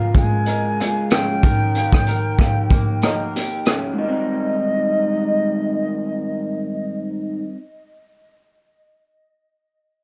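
A slightly broken-up electric guitar through a small old amp opens this hazy, laid-back bedroom-pop excerpt in Ab major at 94 BPM, its picked, compressed accompaniment carrying a subtle chorus and warbly pitch drift. A gritty, saturated garage drum kit with a punchy kick, hi-hat and rim click pumps in a small room until 3.8 seconds, while an airy, bright bansuri carries the melody with vibrato and a soft attack, wrapped in chorus, tape echo and plate reverb. A very quiet vibraphone with soft mallets adds a mellow, ringing second line with slow motor vibrato, and the lightly swung cassette-tape recording moves from Db6 through Eb7 to Abmaj7 at 4.0 seconds.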